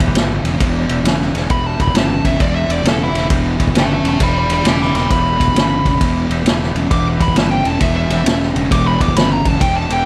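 Light reverb gives this short, brooding, gritty cut of blues rock and southern rock the feel of a small room, with the vintage acoustic drum kit mixed up front. At 133 BPM in 4/4 with a swung eighth-note feel, the drums play kick, ride cymbal and a medium-tuned snare, with a punchy kick and a rolled-off top. Underneath, a double-tracked fuzz guitar plays a picked, distorted riff low in its range. A growly, bright fingered electric bass with fuzz and overdrive sits on the E minor chord. Very quietly, an overdriven tonewheel organ holds thick sustained chords with key click, percussion, chorus vibrato and a slow rotary speaker. At 1.5 seconds a smooth, dark overdriven lead guitar enters with a picked solo melody, its slapback echo lending it a vintage edge until the cut ends at 10.1 seconds.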